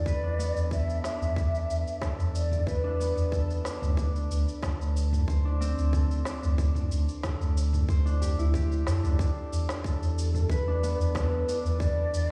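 A breathy, hollow ney with tape echo and shimmer reverb opens this meditative, hypnotic organic downtempo excerpt over ringing, thumb-plucked concert harp arpeggios with digital delay and a deep, round sub bass pumping under sidechain. A tight, up-front electronic kick and a drum kit of shaker, toms and woody snare join at 0.1 s, while a small, very quiet udu surfaces at 1.2 s. The harmony settles on Em7 at 9.2 s and the ney returns at 9.8 s, the mix resounding from a big sound system in a bare stone room.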